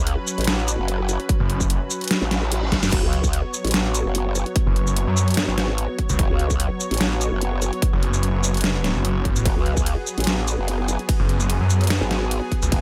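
Heavy wobble dubstep in F# minor at 147 BPM with a half-time, lightly swung feel, this chaotic, menacing excerpt sets a growling, formant-filtered wobble bass and a lush, airy unison pad with sidechain pumping against an overdriven dubstep kit of deep snare, hi-hat, ride, crash and shaker, all from the opening moment. A punchy overdriven electronic kick arrives at 1.3 seconds, and a snarling, detuned sawtooth bass with a moving notch and distortion jabs briefly before returning at 4.7 seconds to stay up front. A reverse cymbal and zap sit in the background just ahead of a drum fill at 2.7 seconds, all in a dry, close mix.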